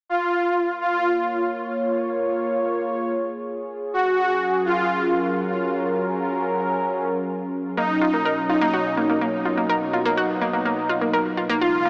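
Dark and melancholic, this techno excerpt moves in a straight 4/4 feel over a slow turn of Bbm, Gb and B chords. A smooth, detuned supersaw carries the melody from the start, its soft attack and tape echo giving the line a hazy, sustained glow. Beneath it, a sweeping resonant pad holds airy, evolving chords with a breathy noise layer, a filter swell and a long release, shimmering through chorus. At 7.8 seconds a round, warbling analog pluck enters with bright, fast-attack arpeggios that decay, colored by chorus and analog delay. The whole piece sits in a huge ambient reverb, yet the recording itself feels dry and gritty, with transformer saturation and a small-speaker character that lends it a vintage hardware edge.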